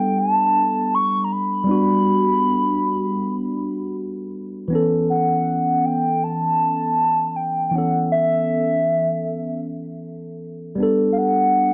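A hollow, woody clarinet-like synth lead with chorus and vibrato carries the melody up front over a bright, clean tine electric piano colored by phaser, in an introspective, soulful R&B fragment with a lightly swung sixteenth-note feel, suspended ninth chords, and a dark production with light reverb, moving into a new section at 4.7 seconds.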